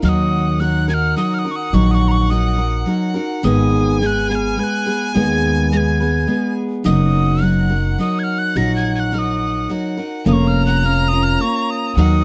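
A breathy, mellow wooden whistle carries the melody high above the rest, its crisp chiff on each attack, its vibrato and its unsteady character all caught close to the microphone. This is an intimate, melancholic acoustic folk piece for a small band in Eb minor, moving at 106 BPM in a straight 3/4, heard as a fragment cut from a longer performance. A single bowed fiddle with a clear, focused tone and light vibrato plays a second line just beneath the whistle. A picked steel-string acoustic guitar sits up front with the accompaniment, finger squeaks audible on its strings. A pizzicato upright bass on gut strings gives a woody, thumpy low end. The harmony moves from Ebm to Abm at 3.4 seconds and closes on Bbm/F at 10.3 seconds, all in a dry, close 1970s-style studio sound with light reverb.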